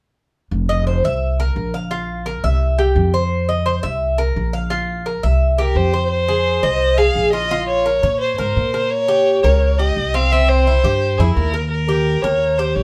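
A single bowed violin, played up front with vibrato, portamento and a smooth top, carries the melody once it enters at 5.6 seconds, singing expressively. Beneath it, this danceable Cuban son and guajira excerpt rests on a pizzicato upright bass with gut strings, heard from 0.5 seconds with a woody, thumpy tone, and a picked Cuban tres whose double strings, some doubled at the octave, give its arpeggios a metallic shimmer. The opening section moves through open power chords before the harmony darkens into F minor at 6.1 seconds, passing through a diminished chord along the way. Recorded as a band playing live in one room with moderate studio reverb, the trio sounds close, acoustic and inviting, with a warm glow.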